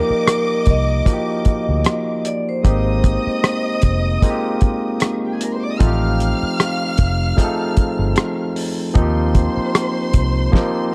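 A dark, warm production with light small-room reverb frames this lush 1970s-style soul excerpt, where a ringing vibraphone with fast motor vibrato carries the melody only until 4.0 seconds, dark bowed violins with portamento sing a second line, a barky, lightly overdriven tine electric piano accompanies up front, a round, foam-muted fingered bass anchors the low end, and a cloth-damped kit with a fat snare and tight kick plays until a drum and electric piano fill at 10.5 seconds.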